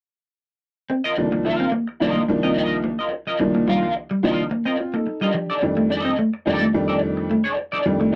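Two picked electric guitars, both on the edge of break-up, open this sly funk excerpt at 0.9 seconds in a straight four-four groove. The higher guitar sits up front with a warm tone and a wah effect, playing accompaniment, while the lower one carries a dark riff beneath it. At 1.2 seconds a clear upright piano joins with stabs that sound woody, boxy and slightly detuned, with a long sustain, and it is placed up front in the mix. The harmony rests on Cm11 before moving to F13 at 5.4 seconds, giving the short passage a funky, knowing feel. The sound is a dry, close 1970s-style studio recording touched with light reverb.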